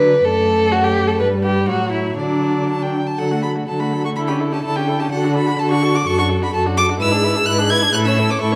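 A rich, focused first violin carries a cheerful, spirited melody with vibrato and a smooth top in this quick classical-period string quartet movement, taken from a longer piece, moving at 126 BPM in 2/4 with rubato in D major. Beneath it, a dark, woody second violin sits up front on the second line, a close, intimate viola supplies accompaniment with an airy bow and soft attack, and a warm, expressive cello anchors the bass with portamento. The whole quartet plays throughout in a reverberant recital hall, shifting into a new section at 3.2 seconds and closing on an A chord at 7.9 seconds.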